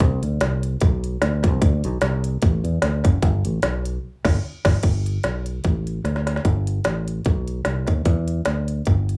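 Reverent and uplifting, this swung uptempo gospel excerpt pairs a growly, punchy fingered electric bass with an up-front organic electronic drum kit of tight kick, woody snare and crisp hats in a dry, rough demo-style mix, marked by a band accent at 4.0 seconds and a drum fill at 6.0 seconds.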